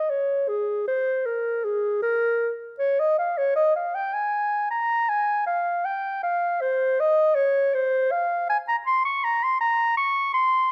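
A mellow, soft-attacked clarinet plays alone and up front in a flowing yet grave baroque-style fantasia, its rubato line ranging from Ab4 to Db6 in a moderate stone-room reverb, in this short classical fragment of about 10.7 seconds cut from a longer piece.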